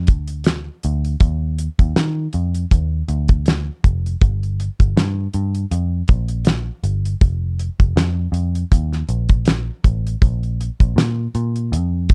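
A muted, picked electric bass opens this short slice of dreamy, nostalgic indie and bedroom pop, its dark, round, foam-muted tone sitting up front and ranging from F1 to Eb3. A damped 70s drum kit joins at 0.1 seconds with hi-hat, kick and a fat snare, sounding dry and airy with a tight kick, and carries a vintage 12-bit sampler grit. The groove moves at an unhurried 80 BPM in 4/4, with a gentle 55% swing on the sixteenths that gives it a relaxed, loping feel in B-flat major. The drums sit louder than the amped bass, and both parts play through to the end at 12.1 seconds. Light reverb and a dusky, mellow production wrap the pair in a hazy, late-night glow.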